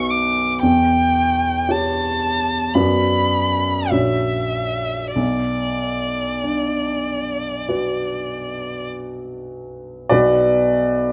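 A violin and a baby grand piano begin together in this brief, melancholic passage of romantic classical music, cut from a longer piece in B minor. The pace is slow and elegiac, around 46-58 BPM in 4/4, with a rubato feel, and the instruments are tuned to A4 = 444 Hz. The single bowed violin carries the melody up front with a rich tone, expressive vibrato and portamento, singing in its upper register. Beneath it, the piano's clear, open accompaniment rings with long sustain through a harmonic path from B5 to C#dim/E, Bm/F#, and F#7/A# before settling on Bm. The violin falls silent at 8.9 seconds, leaving the piano to carry on alone until 11.1 seconds, all within a dark production and a moderate large-studio reverb.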